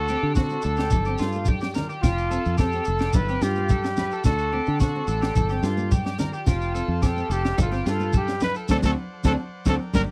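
Warm and danceable, this short highlife guitar band excerpt moves at 108 BPM in a straight 4/4, with a dark, breathy trumpet carrying the up-front jazz-style melody with light vibrato and scooped notes over a round, foam-muted fingered electric bass, twangy slightly broken-up electric guitar arpeggios through analog chorus and tape echo, a bright fingerpicked steel-string acoustic guitar with finger squeak in the background, a very quiet buzzy combo organ holding sustained chords, ringing congas played with soft hands, a grainy shekere, and a tight funk drum kit with a high-tuned snare entering at 0.4 seconds, all cycling through D7, Gm, F and G7 in a dry, close 1970s-style studio sound before a band accent at 8.7 seconds and a closing drum fill at 9.8 seconds.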